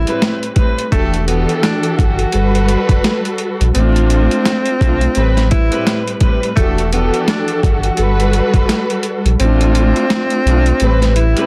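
Dark and reflective, this boom-bap hip-hop excerpt in E minor moves at 85 BPM with a 16th-note swing, pairing a gritty, overdriven sampler-style drum kit with a thumpy kick that drops out from 9.4 seconds, a deep sine sub bass with octave, a bowed studio string section carrying vibrato, portamento and a cassette-tape tint, and a mellow, breathy tenor saxophone melody with subtone and scooped notes, all over dry, densely limited production dusted with vinyl crackle as the chords cycle through Am9, Em11, Gmaj9 and F6/A.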